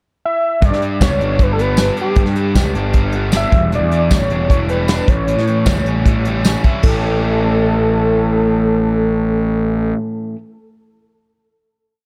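Wistful yet upbeat, this short indie rock piece moves at 154 BPM in A mixolydian, opening with a brief pickup before a fat analog lead enters at 0.3 seconds with a detuned sawtooth tone, a sub octave beneath it, chorus, vibrato and analog delay, singing a motif-based melody in sustained phrases. From 0.6 seconds a crunchy, double-tracked overdriven guitar plays picked arpeggios bathed in spring reverb, while a fuzz-laden picked electric bass sits up front with a punchy, syncopated riff. A soft brush drum kit with a punchy kick, medium-tuned snare, hi-hat, crash and tambourine drives a 60s soul groove through the interlude, moving over G, Em7 and A7, then falls away at 6.9 seconds as the band holds a final chord. The production is dark and warm, with light reverb and a small room ambience.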